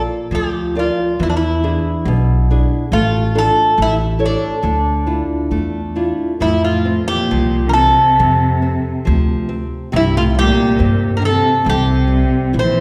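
A picked Greek bouzouki carries the melody up front, its metallic double strings with some octave doubling giving this passionate, longing fado-style ballad its ache at a rubato 69 BPM in 2/4. A small, fingerpicked nylon-string guitar accompanies, and a woody, thumpy pizzicato upright bass on gut strings sits up front beneath it. At 6.4 s, as the harmony settles into F major, a single bowed cello adds a smooth, warm second line with vibrato, and the whole excerpt is heard from further back in a wet recital hall.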